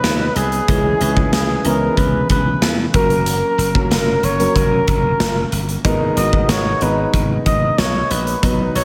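A straight 4/4 groove from a big rock drum kit with a punchy kick, placed up front, drives this urgent, dramatic 1980s-style pop passage, where a glassy, growly slap bass sits beneath a deep, long-sustaining grand piano and a warm solo flugelhorn sings the melody with vibrato, both horn and piano carrying slapback echo (the horn adding digital delay) inside a wet concert-hall reverb that gives an arena-sized sound.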